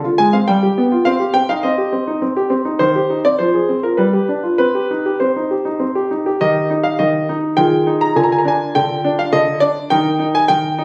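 In a rubato triple metre, this serious, restless excerpt from a classical-period sonatina features a solo concert grand piano, clear and worn with deep bass and short sustain, set up front in a phone recording of the room with light club reverb, shifting from its opening minor-key passage to a major-key one at 6.4 s.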